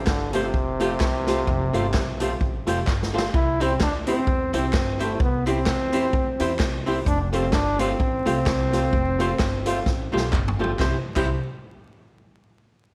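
Ska with a joyful, bouncy swing, this short passage from a longer piece rides on a clear, up-front trombone carrying the melody with light vibrato and a smooth top, its lines touched by slapback echo until it drops out at 10.3 seconds. Beneath it, a woody, growly upright bass plucks the low end while a swinging big-band drum kit, natural and hall-toned with a boomy kick, drives the groove and throws in fills at 2.9 and 9.9 seconds. A clean, hollow-bodied archtop guitar supplies picked accompaniment, and a worn, slightly detuned upright piano adds boxy stabs from the background, both carrying slapback echo as well. Group handclaps sit far back with a vintage, band-limited character. The harmony moves between Fadd9 and C, the whole set in a small room with light reverb and a layer of vinyl crackle.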